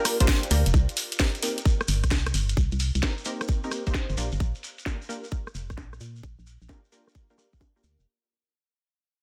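A swung two-step rhythm at 131 BPM drives this late-night, skippy UK garage excerpt, with a tight, up-front electronic kick, a garage kit of filtered hi-hats, rim clicks and a cracking snare, a grainy vintage shekere, and a hollow, dark, organ-like FM bass beneath punchy, nasal, detuned chord stabs with chorus and delay moving from Bb6 to Cm7, while a very quiet ethereal, airy pad sounds briefly at 0.7 s as the music fades out and a filter sweeps across the drums.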